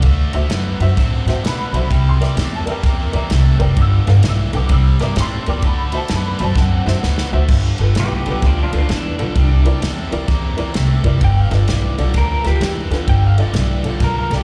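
A gritty, soulful electric blues shuffle at 129 BPM opens on a jangly, detuned honky-tonk upright piano and a bright, overdriven picked guitar riff, both carrying slapback echo, over a woody, up-front pizzicato upright bass and a punchy, airy country drum kit, moving through D7, C7 and G chords with a drum fill at 6.6 seconds before a lo-fi, slightly broken-up guitar through a small old amp enters at 8.0 seconds with a fingered melody carrying spring reverb and slapback, all heard as a live club gig through the venue's PA.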